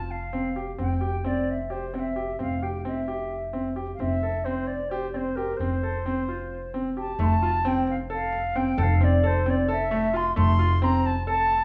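This short excerpt of contemporary chamber music in an uneven 7/8 metre opens with three parts together: a mellow wooden flute carrying the melody, a bright concert grand piano playing arpeggios, and a pizzicato upright bass holding the low end. The flute sounds airy and straight-toned, with a soft attack and rolled-off highs. The piano is brilliant and polished, with short sustain and deep bass. The bass is woody and growly, with the bite of steel strings. At 7.2 seconds a very quiet frame drum joins, played close with soft hands and a warm, acoustic tone, as the music moves into a new section. The flute, piano and bass sit up front in a moderate recital-hall reverb with a touch of small-room ambience, giving the whole a shimmering, hopeful mood.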